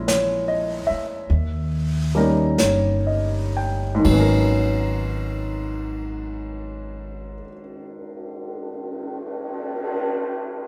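Set in a wet stone room with the band playing live together, this smoky, intimate jazz ballad fragment in G# minor swings slowly at 38-53 BPM and eases its pace through the first 4 seconds over A#m7b5 and D#7 before settling on G#m11, with a clear, present baby grand piano up front, a woody, growly pizzicato upright bass that drops out at 7.4 seconds, and a brushed drum kit with dark cymbals, a medium-tuned snare and a punchy kick.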